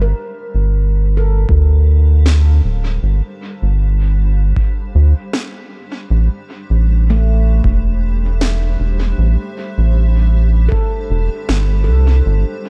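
This ambient dub excerpt feels spacious and meditative, moving in a lightly swung 4/4 over a shift from Gm11 to Am7. A cloudy, blurred granular pad fades in from the start, holding sustained chords that evolve slowly and sit bathed in their own reverb. A ringing, airy handpan, played with the fingertips, spins arpeggios through a tape echo. Beneath them, a round analog bass stays up front and dominant, its filter pluck giving each sustained note a fast attack. A deep, overdriven electronic kick enters at 1.5 seconds, and a woody electronic snare follows at 2.3 seconds, trailing dub echo. The overall sound is dry, with little room reverb.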